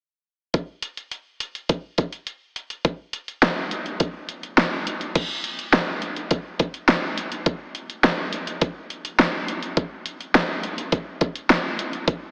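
A pop drum kit leads this short, cool and nocturnal excerpt at 104 BPM in a straight 4/4. It plays from 0.5 to 12.2 seconds with crash cymbal, hi-hat, kick and snare, and its electronic, layered sound is overdriven and up front, with a knocking kick, a fat snare and warm hats. A lush hall reverb and a heavily compressed, AM-radio tone frame the recording, which moves into a new section at 5.2 seconds.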